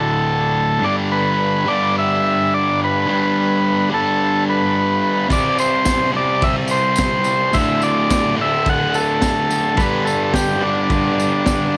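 A buzzy vintage combo organ carries the melody through tape echo over a fuzzed, double-tracked electric guitar riff that sits up front and bright in this swaggering, rowdy garage rock excerpt at 107 BPM in a straight 4/4. The harmony moves from D5 to G, then through C5, D5 and G5. At 5.3 seconds a gritty, saturated breakbeat kit with a tight kick, high-tuned snare and dark cymbals arrives alongside a jingly, close tambourine, all set in light reverb and small room ambience.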